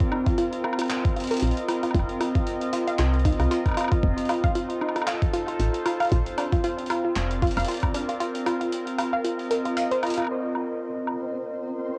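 IDM at 115 BPM with a lightly swung 16th feel, eerie and melancholic, built on a warbling, detuned tape-like pad holding nostalgic chords from F through Bbsus24/C while a dusty, chorused pluck spins arpeggios through analog delay under a filter sweep. An overdriven, pitched-up kick thumps up front until 7.9 seconds, beside a gritty jungle-style sampler kit of crash, handclaps, hi-hat and woodblock dulled by low-pass filtering, and a soft, round, woody FM bass enters at 1.4 seconds. In the closing section the pad takes its own filter sweep as a flickering, granular texture appears at 10.7 seconds, the piece set in a moderate booth ambience and recorded at home on cassette.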